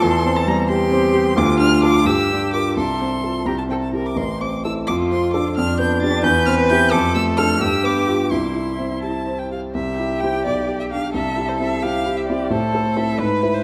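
A quick classical-period movement for piano trio, this lively, cheerful excerpt moves in a straight 6/8 at 86 BPM counted in dotted quarters, settling into C major from 4.2 seconds. The violin carries the melody with a warm, focused tone and singing vibrato, climbing as high as A6. Beneath it the cello plays a second line in its upper register, rich and smooth-topped, bowed with vibrato. The baby grand piano, dark and mellow with long sustain, sits up front as accompaniment, spanning from deep bass notes to the middle of the keyboard. Harmonies pass through familiar cadential turns such as G7/F resolving to C/E and G7 resolving to C, and a new section begins at 9.7 seconds. A moderate concert hall reverb gives the trio a natural sense of space, and the passage stops at 13.6 seconds, clipped from a longer piece.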